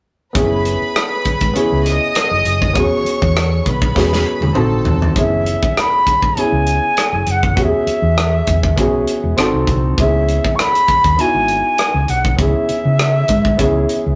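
A lush 1970s-style soul groove opens at 0.3 seconds with a soft-attack studio string section playing a floating, sul tasto second line over a present baby grand piano, moving through chords like F#9sus4 and E69 at 100 BPM with a gentle sixteenth-note swing. A dark, round hollow-body electric bass and an up-front acoustic drum kit with a punchy kick and medium-tuned snare join almost immediately, the kit using hi-hat, rim click and toms as well. A drum fill from 4.0 to 5.2 seconds leads into the second section, where the strings stop and an airy metal jazz flute takes the melody at 5.2 seconds, expressive and touched with vibrato. Underneath, the chords return to F#9sus4 and pass through G#7b9 before settling on C#m9, giving the passage a cinematic, smooth mood. The sound carries a wet studio reverb yet keeps the rough character of a rehearsal-room recording, and the piece is cut from a longer performance.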